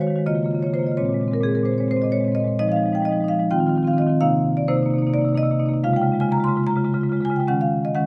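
Set in seven-eight metre and played with a flexible, rubato feel, this short passage of contemporary classical music for solo marimba is playful and flowing. The marimba, struck with medium hard mallets, sits up front with a dark, smooth tone, ranging from its low Bb2 up to C6. The harmony moves through colourful chords such as Db69, Bbsus2, Fm7, Eb69 and Cm7, touching Db6 before arriving at Ebm7 near 7.5 seconds, which gives the music a bright, open lydian shimmer. Close, detailed microphones capture the instrument clearly, while a moderate concert hall reverb lends a gentle sense of space around each note. Lasting about 8.1 seconds, it is cut from a longer piece.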